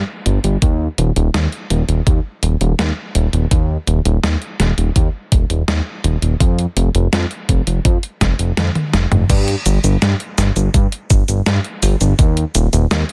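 A fat, thick sawtooth bass opens this excerpt from a longer synthwave piece, its detuned tone striking with a fast attack and decaying under a sidechain pumping effect as it ranges from Eb1 to G2. At 0.3 seconds a detuned 8-bit digital drum machine joins with a sampler-style, tape-tinged character, playing cabasa, crash cymbal, hi-hat, a medium-tuned snare and toms that sound re-recorded in a small room. A layered, knocking electronic kick drum enters at 0.6 seconds and sits up front, prominent in the mix. The mood is driving and nostalgic at a steady 83 BPM in a straight 4/4, tuned to A4 = 442 Hz. A drum fill leads into a new section at 9.3 seconds, and the sound stays dry and close, with a dense, heavily limited modern master.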